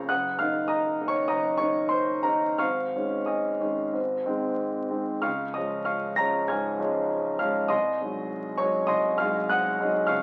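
Rubato in 4/4, drifting between 83 and 102 BPM, this hopeful, passionate romantic character piece for solo piano moves from an E-flat minor colour through a suspended A-flat to D-flat and on to an A-flat seventh. The concert grand sits up front and intimate, with deep bass reaching down to Gb1, long sustain, a polished yet present tone, and audible action noise beneath the notes. A short studio reverb surrounds the instrument, and the whole 10.2-second fragment carries the crackle of a very old 78 rpm record.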